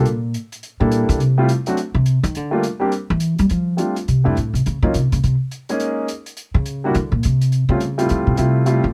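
Small-group swing and bop jazz in F major at 209 BPM, with a playful, relaxed mood and a 62% swing on the eighth notes, taken from a longer piece. The pizzicato upright bass solos throughout, woody and thumpy with steel strings and sitting up front, while an intimate concert grand piano comps with deep bass and audible action noise, and an airy, polished hi-hat keeps time. The sound is close and detailed with little reverb, and the chords move through colourful changes such as Gm69, Ebm7, A7alt and Dm11.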